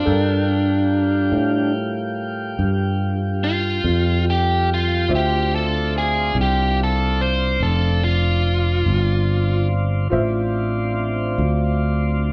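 Light reverb wraps a band playing live together in one room. This brief slice of a slow blues in 12/8 has a smoky, brooding mood as the harmony moves from Gm7 to Dm7. A biting, overdriven lead guitar carries the picked melody up front until it drops out at 9.7 seconds. Beneath it, a growly, punchy fretless electric bass sustains its low notes prominently, while a tonewheel organ holds smooth, clean chords through a slow rotary speaker. Further back, an upright piano adds woody, slightly detuned accompaniment with a long, ringing sustain.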